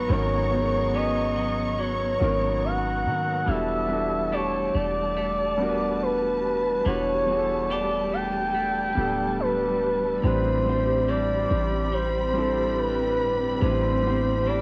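A straight 4/4 pulse at 71 BPM carries this moody, longing contemporary R&B passage, cut from a longer piece and moving through G#m11, Em11 and Am11 chords. A smooth, gliding lead with chorus and vibrato sits up front over a clear concert grand piano, a bowed studio string section with expressive vibrato, and twangy, compressed clean electric guitar arpeggios, all four colored by cassette tape. Underneath, a deep, boomy 808-style bass with a fast attack and mellow decay anchors the low end, and the whole sits in a small room with a homemade cassette character.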